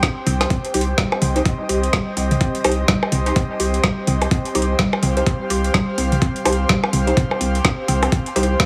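A heavily compressed, radio-like sound with light reverb frames this short cut from a longer minimal techno piece, sparse and hypnotic at 126 BPM in 4/4 with a 60% swing on the 16ths, resting on C minor. An overdriven, knocking electronic kick sits up front from the start, joined by a garage drum kit with a woody snare and metallic hats, also overdriven, while overdriven electronic toms and percussion blips enter at 0.3 seconds and trail off through a dub echo. A round, deep analog bass holds C2, sustained and dark, pumping against the kick alongside an airy, breathy pad that drifts between C4 and G5 with a slow attack, long release and chorus. A hollow, bouncy square pluck carries the riff between G3 and G4, its short decay softened by chorus, cassette tape colour and tape echo. From 0.7 seconds a crisp, detuned wavetable chord stab sits in the background, its moving notch, 12-bit sampler grit and dub echo adding a bright digital glint over the single Cm chord.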